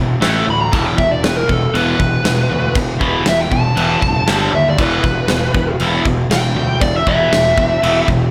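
Hard rock with a heavy, driving mood in straight 4/4, this short passage is cut from a longer piece and is built around a lead guitar solo. Two overdriven, picked guitars sit in the background playing the riff, one cranked stack tone that is bright and tinged with phaser, the other sludgy and dark. Underneath, a fingered electric bass adds a growly fuzz, while a big acoustic rock kit enters at 0.2 seconds, up front with a punchy kick, a medium-tuned snare and crash cymbal, set in a stone room sound. From 0.5 seconds a smooth, shadowy lead guitar takes the melody up front, its overdriven tone riding high above the riff. The harmony moves from A5 to E5, then shifts to G5 at 4.3 seconds before returning to E5, all framed by light reverb and a small room ambience.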